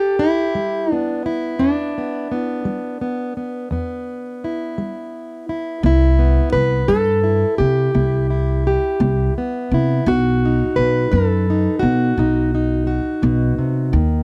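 Acoustic country blues in E minor, this soulful, smoky excerpt moves at a slow 57 BPM in a straight 12/8 feel. A fingerpicked, plugged-in steel-string acoustic guitar carries the melody from the start, its jumbo body giving a warm, full-bodied tone with fresh strings, sitting up front in the mix. At 5.8 seconds a pizzicato upright bass joins, woody and steel-strung, also placed close and forward beneath the guitar. The harmony moves from E minor to Cmaj7 as the bass arrives, then to B at 10.1 seconds, leaving the passage hanging as it is cut from a longer piece. The sound is dry and close, in the manner of a 1970s studio, with only light reverb around the two instruments.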